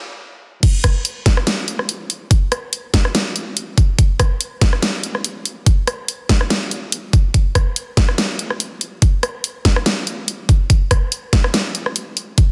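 A half-time dubstep groove at 143 BPM with a slight 16th-note swing drops in at 0.6 seconds after a brief stop, pairing a knocking, overdriven electronic kick with a layered dubstep kit of huge snare, hi-hat, rim click and crash cymbal, both up front in a dense, heavily limited mix with light digital reverb that feels heavy and chaotic in this excerpt.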